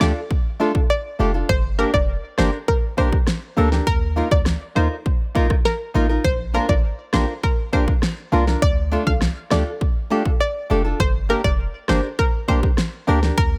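A punchy, up-front pop drum kit of kick, rim click and fat snare drives this bouncy, sunny dancehall excerpt in straight 4/4, with a deep, boomy 808-style bass sitting just as far forward. A round, full-bodied analog pluck carries the melody through chorus and tape echo, while a hollow, organ-like percussive stab with chorus supplies the accompaniment and a fingerpicked nylon-string guitar adds arpeggios over a Dm, Gm, Ebsus2 and Bb progression. The mix is dry, with little reverb.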